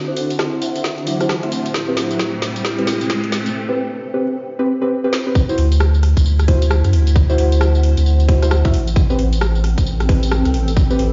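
Skippy, swung two-step garage rhythms from a kit of woody snare, metallic hats, rim clicks and tambourine, plus a tight, up-front electronic kick, drive this moody UK garage fragment of a longer piece. A silky string machine, a dark vibraphone with medium mallets and an electronic riser build under filter sweeps until the drop at 5.4 s brings in a thick, saturated sub bass, while deep, nasal chord stabs with dub echo decay and a cloudy, evolving granular pad sustains through stone-room reverb and vinyl crackle.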